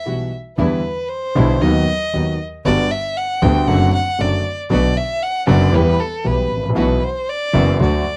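This dry, close recording has the character of a 1970s studio session, with only a light reverb around the players. It is a playful, nostalgic tango in 4/4 with a rubato feel, cut from a longer piece. After a brief break, a warm, expressive violin takes a solo from 0.6 seconds, bowed up front with vibrato, portamento and a smooth top. A polished, present concert grand piano accompanies with deep bass and short sustain, while a clear, intense bowed double bass with light vibrato carries the low line from 0.6 seconds. Beneath them, a very quiet chamber string section adds dark, soft-attacked stabs played sul tasto, intimate and close, as the harmony moves through chords such as Em7, Gmaj7 and Bm before reaching Bsus4.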